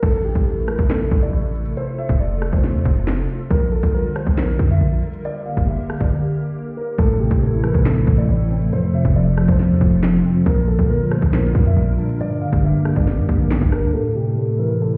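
A drill drum kit with a hard-clipped kick sits up front in this menacing, cold hip hop drill cut from a longer piece. It runs at 138 BPM with a half-time feel in A phrygian, and its sharp snare, crisp hats, handclaps, rim clicks and crash have a tape-warm, electronic edge. A punchy, heavy 808-style bass with a sine body, a noise layer and a fast, decaying attack sits up front beside the drums. Above them, a dark, mellow concert grand piano carries a boxy, low-passed melody. A hollow, flute-like pad holds sustained chords with a warbling, detuned vintage character and ensemble chorus, cycling through Am, F, Bb6 and Gm. The drums drop out from 6.1 to 7.0 seconds, and at 7.0 seconds a bright, clean, bell-like tine electric piano enters up front as accompaniment. The drums and bass stop near 13.9 seconds as the piece turns back to Am, and the whole mix sounds muffled, as if heard through a wall, with a stone-room reverb.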